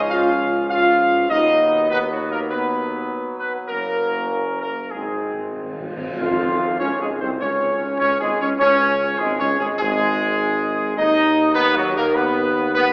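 Triumphant and majestic, this classical ceremonial fanfare in Db major at 100 BPM sets a dark, up-front trumpet section's melody over sustained chords from clear, vintage-toned trombones and distant, mellow French horns, with a mellow solo tuba on the bass, soft-malleted timpani playing a fill from 4.9 s into a band accent at 6.2 s, and very quiet dark cymbals and tam-tam, all heard through the lo-fi AM radio sound of a reverberant concert hall.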